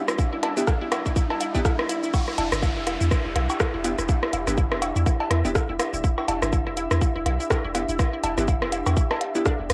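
A home cassette recording with light reverb carries this cool, quirky minimal techno excerpt at 123 BPM in E minor, where a filter sweep on crisp, detuned wavetable chord stabs and a faint pulsing gated texture build until the drop at 2.1 seconds, led by an up-front tight, layered kick and a deep, punchy sine sub bass with sidechain pumping, while clicky, overdriven hi-hats, rim clicks and shaker sit alongside an analog-delayed electronic rim click, woodblock and cowbell, a juicy, squelchy resonant blip pluck riff adds chorus and delay, an ethereal, mellow pad drifts in the background, and a riser and downlifter end by 6.0 seconds.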